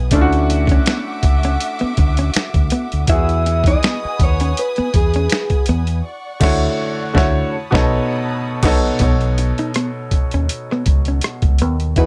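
Opening on a clear, open grand piano, veiled con sordino strings and a round, dark fingered electric bass, this smooth, relaxed neo-soul R&B excerpt moves at 81 BPM with a swung 16th feel over Dmaj9, Emaj7 and B9 chords. A gritty, pitched-down boom bap kit with a thumpy kick, finger snaps and rim clicks sits up front beside a clean hollow-body jazz guitar second line, while a picked, slightly broken-up electric guitar through a small old amp carries the melody with slapback echo from 3.1 to 5.6 seconds. The strings stop at 9.0 seconds after a band accent, and the mix stays dry, with little reverb.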